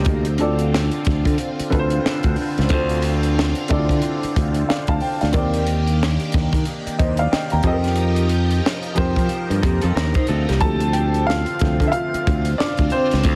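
A smooth, introspective neo-soul R&B excerpt with a swung sixteenth feel opens on a tight funk drum kit with a high-tuned snare, a growly fingered electric bass up front, a woody upright piano and a swirling, phased string machine holding sustained chords over Dm7, Cm9/Eb and F9sus4, while a slightly broken-up, lo-fi electric guitar through a small old amp sounds briefly at the start and returns at 9.6 seconds before the upright piano takes a solo from 10.6 seconds, the mix carrying light reverb, a dense, heavily limited master and vinyl crackle.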